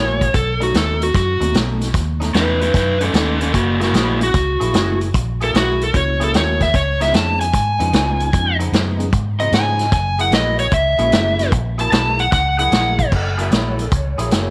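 Light reverb and small-room ambience frame a swaggering, laid-back electric blues shuffle cut from a longer piece, where an overdriven slide guitar solos up front until 13.1 seconds over a twangy, slightly broken-up riff guitar with subtle chorus, a round, foam-muted bass with transformer saturation, a punchy vintage kit with dark cymbals, and a mellow, flute-like tonewheel organ with key click and slow rotary speaker that slips in behind them at 4.2 seconds as the changes move through B9, F#9 and C#9.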